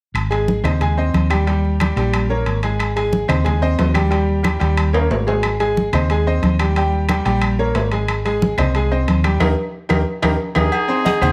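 A lively salsa groove in straight 4/4 opens this sunny, danceable cut from a longer piece. Woody, band-limited claves and soft-handed, thin-skinned congas sit in the background, while ringing metal-shell timbales and agogo bells add a vintage edge. Up front, a dark, round hollow-body electric bass played with the fingers anchors the low end. A brilliant upright piano, slightly detuned with audible action noise and long sustain, carries the accompaniment over a back-and-forth between Abmaj7 and Eb7. Drum fills arrive at 4.9 seconds and again near the close, where a band accent lands from 9.4 seconds as the harmony settles from Eb to Ab. A tight, punchy trumpet section with a smooth top takes the melody only at 10.6 seconds, an airy bamboo pan flute with soft chiff and vibrato slips in a reedy second line just before the cut, and light reverb lends a touch of space.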